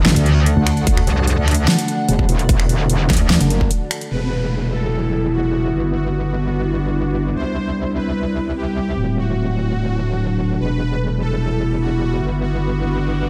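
This chaotic, heavy half-time wobble dubstep fragment opens mid-drop with a morphing wavetable pad, a blurred granular cloud pad and a metallic, overdriven wobble bass, soon doubled by a second distorted, bright wobble bass layer that carries on to the end, while a big-room kit with a huge up-front snare, hi-hat, finger snaps and crash and a punchy overdriven kick pound through the first four seconds before a brief break at 3.7 s gives way at 4.1 s to a smooth detuned supersaw melody washed in diffuse delay and a background downlifter, all set in a dreamy, reverb-soaked hall with the pads pumping under sidechain.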